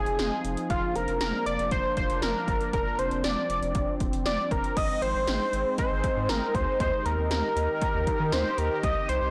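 A straight, driving 4/4 beat from up-front 80s electronic pad drums (punchy kick, gated snare, metallic hats, all overdriven) carries this melancholic synth-pop fragment, as a round, deep analog bass sits beneath a bright, detuned sawtooth pad with slow-attack filter swells and chorus, and a bold, retro octave-doubled lead with vibrato carries the melody over chords moving from Fm7 to Ab at 4.8 seconds, inside a blown-out, overdriven recording touched by light digital reverb.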